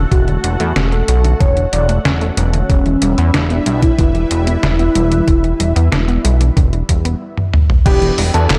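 Synthwave with a nocturnal, moody air, where a lush detuned unison pad holds sidechain-pumped chords with phaser and chorus, a round analog pluck runs arpeggios in the background through digital delay, a glossy pulse-width synth bass sits up front, and a velvety sawtooth lead sings the melody with vibrato and tape echo over a detuned 8-bit drum machine with a medium-tuned snare, handclaps, hi-hat and crash and an overdriven, thumpy electronic kick, before a drum fill at 7.4 seconds leads at 7.9 seconds into clangy electric grand piano stabs and a dreamy FM electric piano with a soft pad layer, all in a dark, warm production with light reverb.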